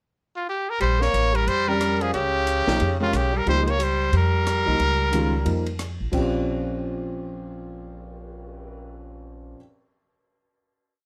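A lightly reverberant, intimate sound opens this short, complete modal jazz piece in Bb dorian, swinging at 180 BPM in 4/4 with a spiritual, hypnotic mood. The brilliant trumpet leads from 0.4 seconds with a forceful, motif-based melody of song-like phrases, its scooped notes and light vibrato sitting up front. An edgy tenor saxophone joins at 0.8 seconds beneath it, carrying a harmony line mostly in thirds with its own vibrato and punchy attack. A woody, thumpy upright bass plays pizzicato in a two-feel, while a compact cocktail drum kit with a dark, rolled-off top keeps a stick ride cymbal pattern alongside a high-tuned snare and punchy kick. From 1.7 seconds a concert grand piano adds syncopated comping in quartal voicings, its deep bass, long sustain and audible action noise giving the texture an intimate depth. The horns fall away at 5.8 seconds, and the rhythm section rings out on a final Bbm69 chord.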